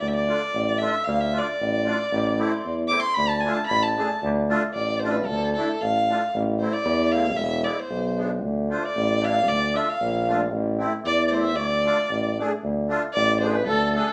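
A dark, woody violin carries the bowed melody up front in this festive yet bittersweet klezmer excerpt in 2/4, over a punchy, vintage-toned tuba bass and a reedy, shimmering musette accordion, while a distant, roomy oboe adds a classical-style second line in the background, dropping out at 4.2 seconds and returning at 8.7 seconds, with the band playing live together in a small room with moderate reverb.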